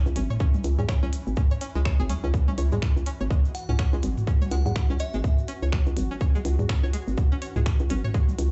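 Built on a tight, layered electronic kick at 124 BPM in 4/4 with a 59% swing on the sixteenths, this short cut of minimal techno in C# minor feels hypnotic and cool, sitting on a single C#m chord throughout. Up front with the kick, a hollow, bouncy FM bass knocks with a punchy fast attack and pumps against the sidechain, while a minimal click drum kit adds overdriven finger snaps and clicky hi-hats that sound re-recorded in a small room. Further back, tape-warmed analog electronic toms carry a tape echo, and a grainy acoustic tube shaker rustles quietly underneath. A string-like resonator pluck plays the riff, twangy and warbling with a vintage, bright sawtooth edge, a noise layer and a filter sweep, colored by chorus, phaser and tape echo. Behind it all, a swarming, nasal drone of detuned unison sines evolves slowly with a moving notch and granular grain, tense and pumping in its own built-in reverb. 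From 3.5 to 5.5 seconds a glassy, crystalline FM bell briefly rings out a high, full-bodied melody with chorus and tape echo, over a dry mix played back through a big sound system in a bare room and darkened by a capped top end.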